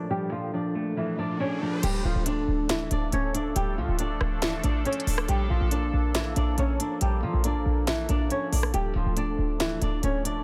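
Set in a digital ambience, this eerie, hard-hitting trap excerpt in D harmonic minor runs at 139 BPM with a half-time feel. An up-front, fingerpicked flamenco guitar carries the melody through a low-pass filter and delay. It opens on a Bbmaj7 with a clean, hollow-body electric guitar in accompaniment, a detuned, warbling sawtooth pad with lush chorus and a vintage character, a filter sweep, and an electronic riser that arrives at 0.9 seconds. At 1.8 seconds the electric guitar stops and an electronic trap drum kit enters with a sharp snare, crisp hi-hats, rim clicks and crash cymbal, alongside a punchy, tight 808-style bass with a sine body and a noise layer. The chords move between Dm and Bbmaj7 as the resonant pad sustains beneath the guitar line.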